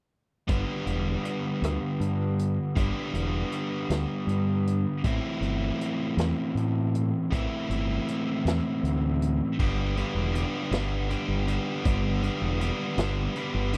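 A biting overdriven electric guitar leads this short indie rock excerpt, playing a picked riff that sits up front in the mix from 0.5 to 13.8 seconds. Beneath it, a growling fingered electric bass, also overdriven and placed up front, carries the low end with a direct, amped character. A vintage acoustic drum kit with a punchy kick, medium-tuned snare, rim clicks, hi-hat and dark crash cymbals sits mid-forward with a rolled-off top. The mood is upbeat and carefree, moving at 53 BPM in a straight 6/8 in G major, with the harmony shifting from G6 to Am7 at 5.0 seconds and back to G6 as a new section begins at 9.6 seconds. The sound is dry and close, recalling a 1970s studio with only light reverb.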